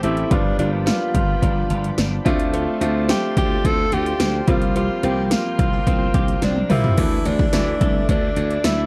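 This dry, close recording in a 1970s studio manner carries a dramatic, urgent fragment of 1980s-style pop, led by a breathy tenor saxophone with light vibrato, scooped notes and slapback echo over a brilliant concert grand piano and a growly, punchy slap bass. Overdriven electronic pad drums sit up front with gated reverb on the snare and toms and metallic hats, joined from 0.3 seconds by a faint cowbell, while a clean, compressed electric guitar riff with ensemble chorus and slapback echo stays in the background and a string machine voicing cellos holds mellow sawtooth chords at a whisper. A drum fill at 6.4 seconds leads into a new section at 7.0 seconds, where the harmony settles on Dsus2.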